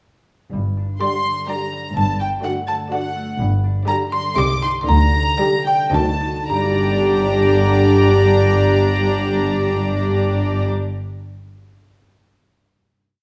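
A playful, whimsical cinematic cue in G minor and 3/4, running 106-127 BPM, opens at 0.5 s with ringing harp arpeggios in rocking broken chords over a warm bowed cello and double bass line; at 1.0 s a woody, dry xylophone on rubber mallets carries the magical, quirky tune with a rich chamber violin section and a floating studio violin section doubling it in unison, while violas add soft-attack accompaniment and a mellow, vintage French horn section holds sustained chords, the whole ensemble set in a stone room's reverb as the music slows into a final G minor chord at 6.5 s.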